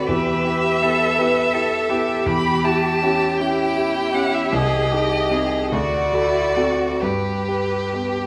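A violin, a second violin, a cello and a grand piano all sound together from the opening moment of this short passage, cut from a slow, romantic classical movement for piano quartet. The mood is warm and serene, moving in 6/8 at 43-56 BPM counted in dotted quarters, with a freely breathing rubato. The lead violin sits up front with a soft attack, singing vibrato and expressive portamento, carrying the melody between B4 and B5. Beneath it, the cello and the second violin share a clear, smooth and even second line with steady vibrato, both heard from a distance. The up-front grand piano offers warm, natural accompaniment reaching from deep C2 to B4, moving through Em, A7/E, Ab/C and D7 before settling on G at 7.0 seconds. A wet recital-hall reverb surrounds the ensemble, and the passage closes at 8.3 seconds.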